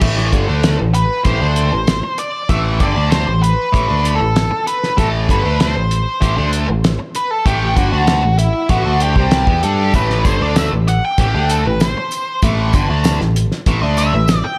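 An octave-fuzz lead guitar takes the spotlight in this dark, trippy psychedelic rock excerpt, entering at 0.9 seconds with a distorted, fuzzy solo sent through analog delay and placed up front. Beneath it, a bright, double-tracked overdriven electric guitar plays a picked riff coloured by flanger, while a picked electric bass adds a warm, direct low end. The cloth-damped drum kit sounds thuddy and acoustic, with a fat snare, tight kick, dark cymbals and a rolled-off top, sitting up front in a small room. A jingly tambourine joins in the background at 9.9 seconds, close and dry. Light reverb and small room ambience frame this short cut from a longer piece, which moves on a straight pulse and opens on an A5 power chord.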